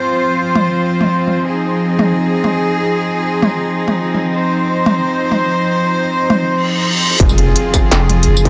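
A half-time drum and bass groove in 4/4 carries this dark, spacious fragment cut from a longer piece. An earthy, up-front chamber cello section opens alone, holding bowed chords on F minor with light vibrato while sidechain pumping ripples through its sustained tone. At 0.6 seconds an overdriven industrial drum kit joins with a clanging snare, crisp hats, tambourine and toms. A reverse cymbal rises into the drop at 7.2 seconds, where an electronic impact lands alongside a distorted electronic kick and a deep, thick saturated sub bass that sits up front. Light reverb and a digital ambience give the mix its open, shadowy space.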